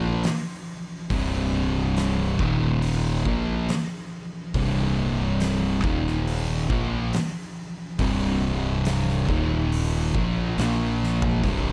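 A dark, distorted fuzz guitar sits up front, picking a heavy riff from C2 to Bb3, while a second fuzz guitar plays a riff in the same range. This brooding stoner and doom metal excerpt, cut from a longer piece, crawls at 70 BPM in a straight 4/4 in C minor, with the guitars grinding over C5 and Eb5 power chords before reaching Bb5 near the close. Underneath, a fingered electric bass with overdrive and tube saturation lays down a round, punchy low end between C1 and Bb1. An oversized, low-tuned acoustic drum kit enters at 0.2 seconds with a fat snare, a punchy kick, hi-hat and toms ringing in a bright stone room with a pumping feel, and it caps the passage with a drum fill at 11.0 seconds. A small room ambience and a warm production wrap the whole thick, heavy sound together.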